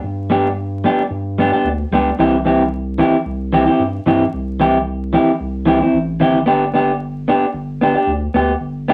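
A twangy electric guitar on the edge of break-up sits up front, its dark, compressed tone carrying the accompaniment from 0.3 seconds in this sunny, carefree highlife guitar band cut from a longer piece. Beneath it, a deep, thick saturated sub bass with a fast attack and sustained notes holds the low end at 112 BPM in 4/4 with a light sixteenth-note swing, moving through G major from G to C and back to G. Moderate studio reverb gives the sound a modest sense of space, while vinyl crackle adds a dusty surface.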